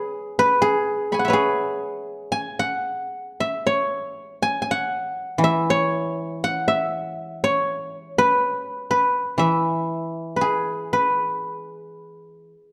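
Chinese traditional solo plucked-string music, this short piece from a longer work has a pastoral, flowing mood. A single guzheng played with fingerpicks carries the whole performance, sitting up front with a silvery, ringing tone that spans from its low register up into high notes. The pulse is loosely in two, with uneven beats and a rubato feel that lets the phrases breathe freely. The overall production is dark and warm, set in a moderate recital-hall reverb that gives each plucked note a gentle halo of space. A new section begins at 11.5 seconds and runs briefly until the piece is cut off at 12.7 seconds.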